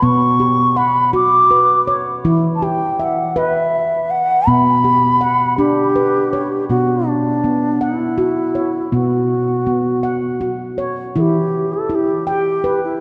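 An airy bamboo bansuri carries a mellow, delay-touched melody over the ringing nitrided-steel arpeggios of a softly played handpan from the very start of this gentle, meditative world excerpt in a steady 6/8, both held up front in a deep church-like reverb as the harmony settles into a barer second passage at 6.7 seconds.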